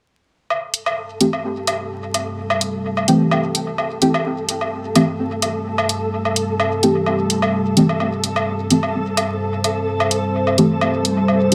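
A light reverb and digital ambience wrap this hypnotic, meditative dub techno passage, with vinyl crackle sitting audibly across the mix. Cut from a longer piece, it moves at 128 BPM in 4/4 with a slight swing on the sixteenths, resting on an Am7 chord in A minor. An overdriven woodblock, layered and re-recorded in a large room, opens things at 0.5 seconds with dub echo trailing behind it. A dry, up-front electronic hi-hat joins, and a flickering, grainy granular texture drifts in on a single high note. Soft, full-bodied chord stabs with chorus, phaser and dub echo arrive at 1.2 seconds, a filter sweep shaping their short, dark decay. From 1.5 seconds a deep, moody pad of detuned sawtooth and sine layers with a sub octave slowly swells in and holds evolving sustained chords, bathed in chorus and its own reverb.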